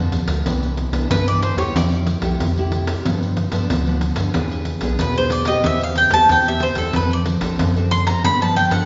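Playful and lively, this samba and choro excerpt in C major moves at 92 BPM in a straight 4/4, with a bright, up-front bowl-back mandolin carrying the melody from 1.1 seconds over fingerpicked nylon-string guitar, a rubbery, nasal square bass and a jingly, close pandeiro, all set in a wet recital-hall reverb as the chords run from Cmaj9 through E7 and Am9/E to G7.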